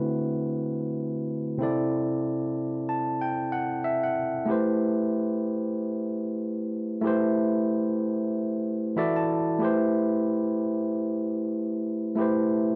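Cinematic and smooth, this soul excerpt moves at 94 BPM in 4/4 with a 16th-note swing, set in A dorian. A single overdriven tine electric piano carries the whole 12.8 seconds, barky and gritty through a combo amp and placed up front. It spans C3 to A5 over D13, C6, Am7 and E9sus4 chords, with fills at 2.6 and 8.7 seconds, and a new section begins at 9.6 seconds, all in a live room with a wet studio reverb.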